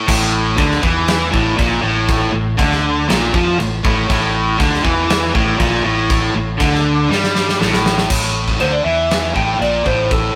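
Straight 4/4 hard rock drives this aggressive cut from a longer piece, built on an up-front gated 80s drum kit with a punchy kick, medium-tuned snare and bright cymbals, a dark, round fingered electric bass, a high-gain distorted guitar riff, a tight distorted guitar in the background, and a double-tracked overdriven guitar with spring reverb that drops out at 8.1 s after a drum fill from 7.1 s, after which a twangy, compressed, slightly broken-up lead guitar begins a short solo at 8.6 s, all captured as a rough, tube-saturated rehearsal-room recording with stone room reverb.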